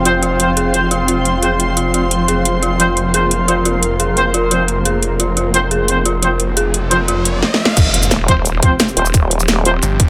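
A snarling, detuned saw bass growls up front through this dark, futuristic drum and bass cut, set against a swarming ring-modulated drone, a blurred granular cloud pad, eerie inharmonic FM bell arpeggios with chorus and tape echo, and vintage brass stabs roughened by 12-bit grit, while a tape-warm kit with a cracking snare and metallic hats plays on, a riser builds from 6.2 seconds, and at the 7.8-second drop an overdriven electronic kick lands with an electronic impact, soon joined by a nasal vowel-sweep wobble bass.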